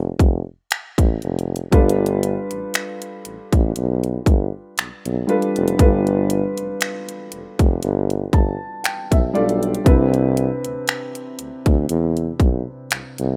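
Sensual and moody, this short excerpt of contemporary R&B sits at a slow 59 BPM with a lightly swung sixteenth-note feel, opening on a close-miked tuba bass with a vibrato, pop-style tone as an electronic trap kit of hard-clipped kick, warm hi-hat and finger snaps sits up front. At 1.7 seconds a soft, mellow felt-muted upright piano joins on a G7 chord, adding an intimate, vintage glow before moving to Cmaj7 after its smooth fill from 7.8 seconds. The dry, rough home-demo mix keeps each part close and exposed, with the tuba carrying a warm presence.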